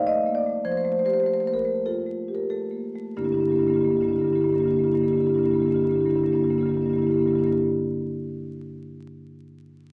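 The rhythm is rubato in 4/4, hovering between 87 and 105 BPM and slowing down over the opening 3.2 seconds. This is a contemporary classical piece for solo marimba, a fragment cut from a longer work in G dorian, with a flowing, hypnotic mood. The marimba, played with medium mallets, spans G2 to Eb5 with a warm, mid-forward tone that sits up front, and it sounds from the start until 7.6 seconds. Its harmony drifts from a rootless F7 to Fadd9 at 0.6 seconds, then settles on Gm6 as a new passage begins at 3.2 seconds. The sound carries a wet recital hall reverb and is heard from further back in the room, while vinyl crackle adds an aged surface.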